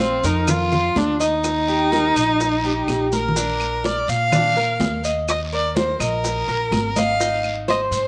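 A straight, danceable 4/4 groove of bright congas, round bongos, woody claves and raspy guiro sits in the background of this sunny Cuban son and guajira excerpt, joined by grainy maracas, while an up-front, nasal bowed violin with vibrato carries the melody over metallic picked tres arpeggios and a thumpy pizzicato upright bass, with slapback echo on the violin, tres, congas and bongos, and a drum fill at 3.1 s leading into the second section.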